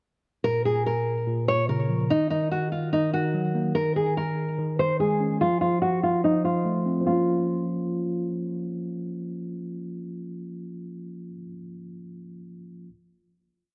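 A dark, cold hip hop drill piece at 145 BPM with a half-time feel in Bb minor, opening with a breakdown where a fingerpicked nylon-string guitar loops an acoustic, deep classical melody over a mellow tine electric piano's patterned eighth-note arpeggio, both up front and repeated like sampled loops. A filter sweep runs through the breakdown as the chords move from Bbm through Ebm, Dbsus2 and F, and at 7.1 seconds the music settles on a final Bbm chord. The guitar stops at 8.3 seconds, leaving the clean electric piano, heard as if through built-in speakers, sounding until 12.9 seconds in a moderate concert-hall reverb under a low-pass filter.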